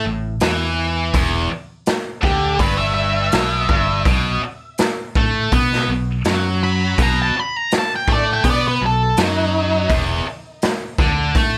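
A dark, fuzz-soaked octave lead guitar with tape echo carries the melody from 2.2 to 9.9 seconds in this gritty, driving fragment of blues rock power trio and southern rock, set in a straight 4/4. Beneath it, a bright, double-tracked distorted guitar picks the riff up front, a growly, amped fingered bass holds the low end, and a raw garage drum kit enters at 0.4 seconds with a punchy kick, medium-tuned snare and hi-hat, its saturated, pumping small-room sound rolled off at the top. Light reverb sits around the band as the chords move from A5 through E5 and B7(no3) to Dsus2/E.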